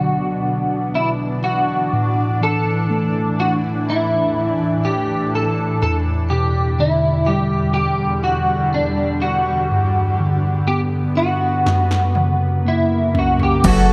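Pop ballad excerpt at 62 BPM, heartbroken and emotional, where an up-front, slightly broken-up electric guitar with analog chorus carries the melody over mellow tine electric piano and a blurred, evolving granular cloud pad through Bm, Asus4, Em7 and G, until an overdriven deep house drum kit with gated reverb fills over an F# chord from 11.7 seconds, joined at 13.6 seconds by deep saturated sub bass and a fingerpicked archtop guitar in the background, with a lush bowed violin section arriving at 13.7 seconds, all in a bright 1980s-style digital production with plate reverb.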